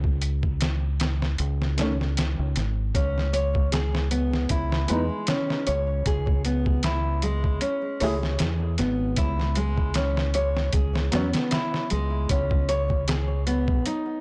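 A round, dark fingered electric bass with tube saturation and a gritty, pitched-down sampler drum kit with a thumpy kick open this smoky, cinematic trip hop excerpt at 77 BPM in C# minor, with a lightly swung 16th feel. A mellow, woody upright piano, slightly detuned and treated with tremolo, tape echo and a filter sweep, enters at 1.8 seconds. Fingerpicked nylon-string guitar arpeggios follow at 2.9 seconds, up front with audible finger squeak and tape echo, over chords moving through C#m7, G#madd11 and B/C#, while the whole recording sounds blown-out and overdriven in a small room with light reverb.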